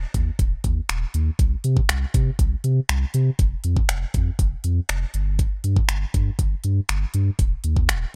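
Energetic yet bittersweet, this short dance-pop excerpt rides a straight feel, with a deep, round sine sub bass carrying the low end throughout, its sustained notes pumping via sidechain. Up front beside it, an electronic pop drum kit layers finger snaps, crisp hi-hats and a knocking kick with a tape-tinged, produced sheen. A digital ambience wraps the pair, and the clip is cut from a longer piece.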